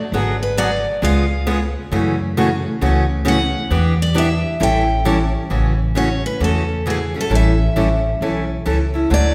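Acoustic string swing in the jazz manouche style, this charming, swinging excerpt moves at 134 BPM in 4/4 with a swung eighth-note feel, settling into A major from 5.5 seconds. A picked steel-string acoustic guitar carries the melody in a bright upper register, taking a solo spot over the first 5.5 seconds. A second picked steel-string guitar supplies the accompaniment, sitting up front with an audible finger squeak, while an upright bass played pizzicato gives a woody, thumpy, dark foundation on its steel strings. The harmony walks through G#m7b5, C#7 and F#m7 before turning through Em7 and A7 to A6, then moving on to A7. The trio sounds as if captured in a church or concert hall, its lingering recital-hall reverb lending the cut an airy, resonant space.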